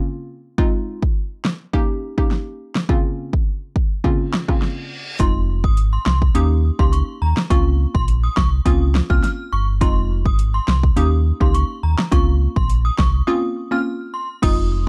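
Punchy, overdriven electronic drums sit up front in this tough, hypnotic dancehall groove at 104 BPM, over a hollow, detuned square-wave pluck that bounces with sidechain pumping and chorus through Fm7, Eb7 and Bbm chords, before an electronic reverse cymbal at 4.4 s ushers in a deep, sine-like sub bass with octave and a chiming, inharmonic FM synth melody shimmering with ensemble chorus, tremolo and delay at 5.2 s, all in a dark, dry mix that reaches a brief break at 13.3 s.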